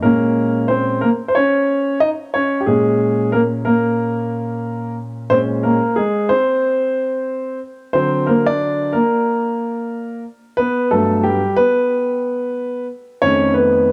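A dark baby grand piano opens alone and carries this short hip hop excerpt by itself, set at 91 BPM in 4/4 with a swung sixteenth-note feel. The mood is nocturnal and smoky, and the piano sits up front with a mellow, vintage tone and long sustain, ranging from F2 to Eb5. It begins on a Bbm7 chord, then at 5.3 seconds moves into a new section that passes through Bbm9, Daug7 and Gmaj9 before landing on Faug7 near the close. Light reverb and a small room ambience surround the instrument, and the overall production is dark and warm. The passage is cut from a longer piece and runs about 13.9 seconds.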